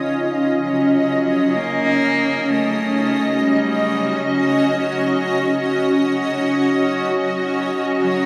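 Cavernous and desolate, this ambient excerpt drifts in free time, tuned to A4 = 441 Hz, as an up-front granular cloud pad holds blurred, detuned, full-bodied sustained chords that shift from a rootless Bbm to Ebm. At 0.6 s a single bowed cello enters with a clear, smooth, even melody played with vibrato, sitting lower in the mix and trailed by delay. The whole scene is steeped in a huge, wet reverb with a long 8.1-second tail, while the pad carries its own built-in reverb.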